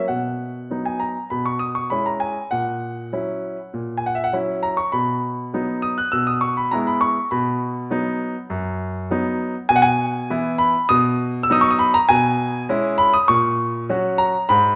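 A classical-period piano sonatina in B major at 100 BPM in a straight 4/4, elegant and playful in mood, taken from a longer piece. A clear concert grand piano plays alone from 0.0 to 14.8 seconds, ranging from F#2 to F#6, with a deep bass, a polished, up-front presence and short sustain. The harmony moves through B, C#m7/B, F#7/A# and E/B before settling on F#/A#, all set in a moderate recital hall reverb.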